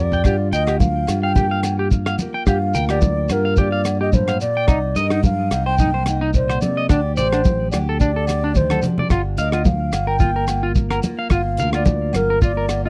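A damped 1970s drum kit with a tight kick and rolled-off top sits up front in this bittersweet highlife guitar band excerpt, swinging lightly at 109 BPM in G minor, with a drum fill at 8.6 seconds, grainy shekere close by and ringing agogo bells and medium-tuned congas further back. A fingered electric bass, direct and prominent, anchors the Gm7, Cm7 and Dsus4 changes, while a woody, full-bodied steel-string acoustic guitar picks its accompaniment in the background and a bright, twangy clean electric guitar adds arpeggios. Over it all, an airy wooden baroque flute carries the tongued, vibrato-touched melody, captured in a dry, close 1970s-style studio sound.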